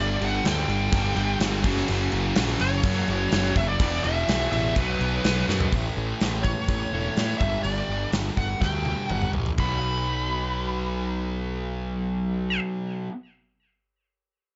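A growly, punchy fuzz bass sits up front in this aggressive, menacing hard rock cut in B minor at 124 BPM, joined by a sludgy, double-tracked distorted guitar riff and a scooped high-gain guitar that stays in the background until it drops out at 5.7 s. A smooth overdriven lead guitar carries the melody high above through a digital delay. A gated 80s drum kit with a tight kick and bright cymbals drives the straight 4/4 feel, with a fill rolling from 8.6 to 9.6 s, all in a dry, dark-topped mix.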